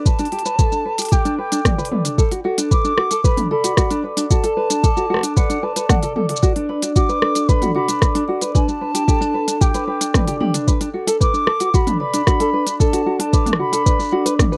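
A straight 4/4 groove from a soft, up-front electronic kick and a crisp, small-room electronic kit of hi-hat, rim click, shaker and toms carries this playful folktronica excerpt, where a light, thumb-plucked tenor ukulele arpeggiates over G and D6, a ringing vibraphone with slow motor vibrato plays a second line, and a pure, distant concert flute sings the melody, the three tuned parts touched by tape echo in a dry, close 1970s-style sound.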